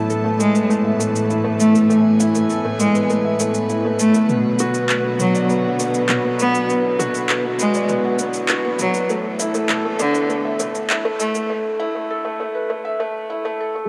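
At 100 BPM in a straight 4/4, a deep house drum kit of handclaps, shaker and toms starts just after the opening, its layered electronic sound roughened by overdrive, in this intimate, melancholic piano and strings electronica piece cut from a longer work. Up front, a felt-muted upright piano plays a soft, mellow riff with a thin vintage tone and tape echo, while a warm studio cello section holds the bass low with smooth, even bowing and vibrato. A single rich cello carries the melody from 0.4 seconds, nasal and boxy in timbre, with a soft attack, portamento and its own tape echo. In the background, a dark chamber string section sustains chords with a reedy, gut-string, period-style colour as the harmony moves between Asus2 and Bm. The whole passage builds under a filter sweep inside a huge ambient reverb and a dark production, until the drums and strings stop at 11.5 seconds and the piano plays alone through the break to 13.9 seconds.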